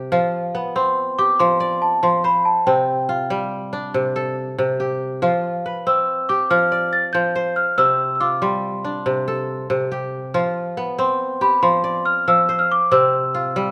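West African traditional music in 12/8 at 94 BPM, hypnotic and joyful, this excerpt in F lydian opens with a crisp, fingerpicked kora spinning ringing arpeggios up front, with a large celesta entering at 0.8 s to carry a delicate, bell-like melody high above. The celesta, struck with hard felt hammers, sounds sweet and full in the mid-forward position. The harmony sways between F5 and C5 chords, and a moderate recital hall reverb gives the pair a gentle sense of space.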